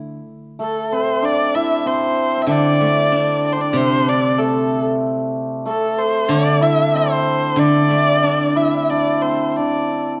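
A fingerpicked steel-string zither opens this excerpt of Chinese traditional chamber music with a silvery, ringing accompaniment, and at 0.6 seconds a single warm, expressive erhu takes the melody, bowed with soft attacks, vibrato and portamento, while a mellow, shimmering hammered dulcimer adds a second line. The mood is pastoral yet festive, moving at 94 BPM in 4/4 with a rubato feel. All three instruments sit up front in a dark production, with the moderate reverb of a recital hall around them.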